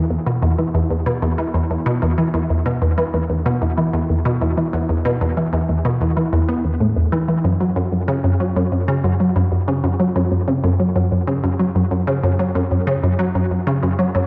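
A resonant blip pluck plays alone from 0.1 to 14.2 seconds, its juicy, squelchy filter tone moving between E2 and B3 with a fast attack and short decay, sitting bright and up front with subtle chorus and analog delay. This luminous, cosmic ambient fragment moves at 94 BPM in a straight 4/4, cut from a longer piece. A wet spring reverb and an echo-heavy mix give the sound a long tail.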